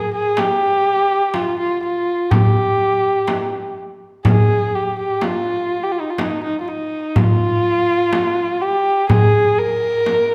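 Set in a straight 10/8 metre, this short excerpt from a longer Turkish makam ensemble piece has a hypnotic, longing mood. A single bowed kamancheh carries the melody from the very start, sitting up front with a dark, woody tone, a smooth top, and expressive vibrato and portamento within a range of Eb4 to Bb4. At 0.4 seconds the percussion joins: a large, deep metal-shell darbuka played with hard hands, its crisp acoustic attack captured in a live room. Alongside it, a small frame drum adds a bright, compressed, saturated layer beneath the darbuka. The ensemble sits in a wet recital hall reverb with a 1.6-second decay, which gives the whole performance a lingering, spacious quality.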